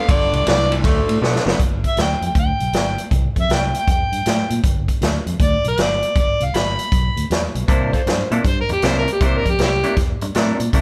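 A rollicking, laid-back electric blues shuffle opens with a gritty, amplified harmonica solo full of tongue slaps and scooped notes over a twangy, slightly broken-up guitar riff, round fingered bass and a punchy vintage drum kit with dark cymbals, whose fill at 1.2 seconds leads into a longer stretch where the guitar drops out and returns at 7.7 seconds alongside a brief second harmonica line with light vibrato, all captured live in one room with light reverb in this short cut from a longer piece.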